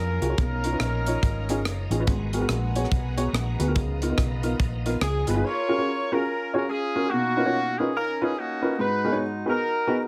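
A jubilant, hopeful uptempo gospel piece in F# major at 143 BPM with a swung feel opens on a smooth-topped horn section melody. Beneath it sit sustained chords from a bright tonewheel organ with slow rotary speaker and a reedy, gut-toned string section in the background, while a round, punchy hollow-body electric bass holds the low end. A woody, slightly detuned upright piano with audible action noise and a tight funk kit of hi-hat, kick and rim click join at 0.2 seconds; the horns return at 5.0 seconds, and after 5.7 seconds only piano and horns remain, all in a dense, heavily limited mix with light small-room reverb.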